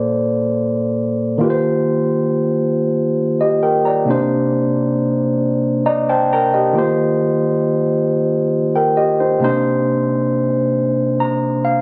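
Dry, phone-recorded studio sound with compression frames a yearning, late-night R&B excerpt in a slow 6/8 at 45 BPM, where a bright, barky tine electric piano, lightly overdriven through a combo amp and up front, plays alone over Bbmaj9, Eb69 and Cm9 chords, adding fills at 5.4 and 10.7 seconds.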